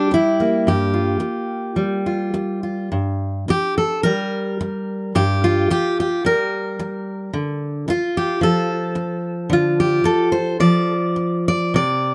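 Close, detailed microphones and a light reverb put a single fingerpicked steel-string acoustic guitar up front, its full-bodied jumbo tone carrying the squeak of fingers on the strings. This is a melancholic, wistful solo folk piece in G dorian, played rubato around 109 BPM in 4/4, with the guitar tuned slightly low to A4 = 438 Hz. The guitar spans G2 to D5, opening on a rootless C7 that settles onto Gm7 within the first second. At 2.9 seconds a new section begins on Gm, then shifts to Dm at 7.3 seconds. The clip is cut from a longer piece.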